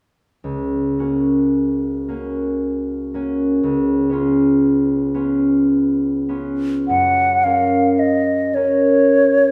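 A concert harp opens the excerpt at 0.4 seconds, its fingerpicked notes ringing up front in a romantic classical duo for flute and harp. The tender, serene mood unfolds in a slow, rubato 3/4 in F# major, with the harp's harmony moving from F# over C# to a C#7 before settling back on F#. At 6.9 seconds the silver concert flute enters with the melody, its mellow, hollow tone carried by vibrato and clearly tongued notes, also placed up front. The harp continues beneath it in a supporting role until both parts end together at 9.5 seconds. A wet recital hall reverb surrounds the pair, giving the church or concert hall setting an intimate, spacious glow.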